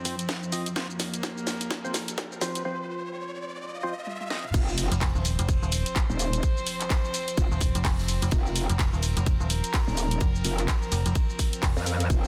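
Bass house at 127 BPM with a bouncy, aggressive swing, this excerpt opens on a build-up of hollow, organ-like stabs under a filter sweep, bowed chamber strings with a reedy gut-string tone, a tight up-front kick, a garage kit with cracking snare, and a background riser and swell, then drops at 4.5 seconds into a saturated, wobbling metallic bass soon joined by a digital FM bass, with an impact and a very quiet acoustic kit played with bundle sticks beneath a dense, heavily limited mix.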